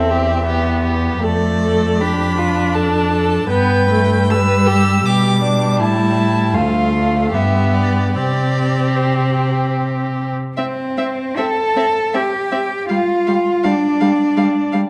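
Classical slow romantic movement for string quartet in C major, lyrical and serene at 73-84 BPM in a rubato 3/4, cut from a longer piece, where a rich, vibrato-laden first violin sings the melody over a focused second violin line, a clear viola accompaniment and an up-front, smooth-toned cello bass, all bowed by single players and bathed in a wet recital hall reverb within a dark, warm production.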